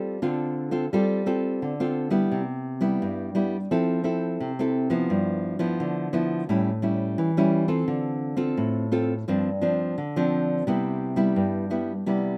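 Set in a moderate studio reverb, this sunny, festive samba fragment, cut from a longer piece and lasting 12.4 seconds, features a solo nylon-string guitar placed up front with a classical, fingerpicked touch, audible finger squeak and a warm acoustic tone as it moves through rich chords from G9sus4 through Cmaj7, Fmaj7, A7 and Dm7 before settling back on Cmaj7.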